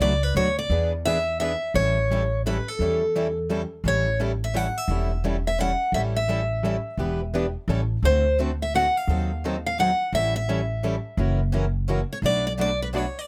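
This charming, playful jazz manouche excerpt swings in 3/4 time, with a bright, fresh-stringed picked steel-string acoustic guitar carrying the melody up front. Two guitars pick the accompaniment beneath it: a plugged-in steel-string with a warm parlour tone, and a boxy swing-style guitar with audible finger squeak. A woody, thumpy pizzicato upright bass on gut strings sits close alongside them, all captured with close, detailed microphones and little reverb.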